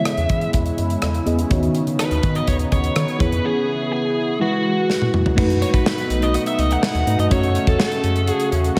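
Soaked in lush hall reverb, this moody, dramatic 1980s-style pop excerpt sets a biting, overdriven lead guitar melody with diffuse ambient delay and shimmer reverb over a full-bodied FM electric piano with tremolo, a detuned, evolving resonant pad with chorus, a rubbery, hollow square bass and a punchy, up-front studio drum kit with bright cymbals, whose fill at 4.9 s leads into a clean, direct-recorded electric guitar riff that enters in the background at 5.4 s.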